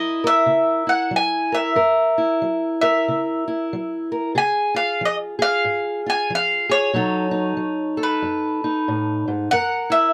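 A dry, close recording with light reverb and a 1970s studio character frames this short cut from a longer acoustic country blues piece, soulful and gritty with a swung 4/4 lilt. Up front, a mellow, round mandolin carries the melody on picked double strings, while a fingerpicked parlour guitar with old strings, also close in the mix, gives dark, woody, boxy accompaniment. The harmony moves from F#7 to C# at 4.3 seconds and to B7 at 6.9 seconds before returning to F#7 at 9.5 seconds.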